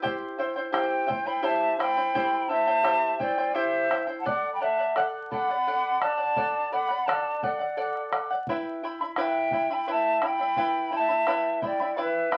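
Crackling like a very old 78 rpm record in a moderate studio room, this wistful, melancholic Andean folk excerpt in 3/4 opens on bright, shimmering fingerpicked charango with double strings at 0.0 s, joined by a deep, dark bombo, then an airy, up-front cane quena carrying the melody with vibrato from 0.7 s and a pure, distant wooden pan flute adding a second line, over chords moving from C to D to Em.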